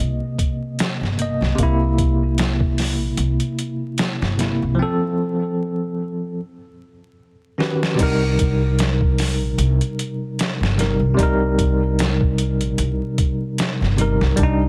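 Dry and close, with a layer of vinyl crackle, this dark, cinematic trip hop fragment moves at 75 BPM with a lazy sixteenth-note swing, beginning on Cm7 and shifting to Eb6 for a second section at 8.0 seconds. An up-front, bell-like tine electric piano carries the chords through tremolo, tape echo and gritty 12-bit sampler character, over a woody pizzicato upright bass. The pitched-down, compressed boom bap kit, with its thumpy kick, medium-tuned snare, hi-hat, crash and small-room ambience, drops into a break at 4.8 seconds and returns with a fill at 7.6 seconds.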